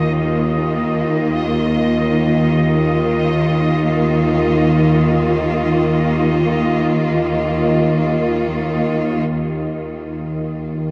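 An ominous, unsettling dark ambient drone in free time opens on an Ebsus2 chord, with a tense, string-like bowed-like drone with a sawtooth edge, ring-modulated grit, a noise layer and vibrato sitting up front in the low register beneath a focused, smooth-topped cello section holding sustained chords. High above, a bubbling, resonant texture with random filter steps hovers on a single pitch, with a soft attack, chorus and its own reverb, while the whole mix is steeped in a huge, dark, wet reverb with an 8.6-second tail. All three parts sound together throughout this 10.9-second fragment cut from a longer piece, with a brief new section arriving at 9.3 seconds.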